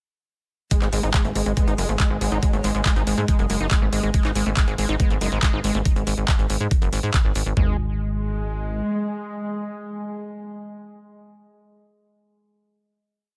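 Heard in a digital ambience with lossy compression artefacts, this complete psychedelic trance piece runs at 140 BPM in a straight 4/4 and feels intense and trippy. From 0.7 seconds an overdriven, layered drum and bass kit hammers a knocking four-on-the-floor kick with floor toms, re-recorded in a small room and sitting up front. A techno kit adds programmed closed and open hats and a clapped backbeat, while a punchy, funky sawtooth bass rolls in sixteenth notes with a fast, decaying filter pluck. Over them a squelchy, screaming acid line, distorted, resonant and chorused with dub echo and sidechain pumping, loops a 6-step riff that drifts against the bar, its filter sweeping until about 5.9 seconds. Further back, a wobbling formant-filtered bass plays short phrases through chorus and digital delay, and a detuned, morphing wavetable pad drones on sustained, warbling chords. The groove ends at 7.6 seconds, leaving a final note that rings to 11.0 seconds.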